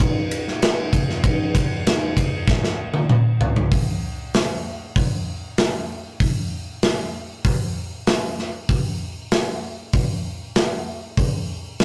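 A rough rehearsal-room recording with tube saturation and light reverb gives this short rock excerpt a gritty, swaggering edge at 97 BPM in a straight 4/4. A big acoustic drum kit plays alone and up front throughout, its bright cymbals, medium-tuned snare and punchy kick joined by hi-hat, ride and toms. A drum fill from 2.5 to 3.7 seconds leads into a new section that carries on to the end at 11.8 seconds.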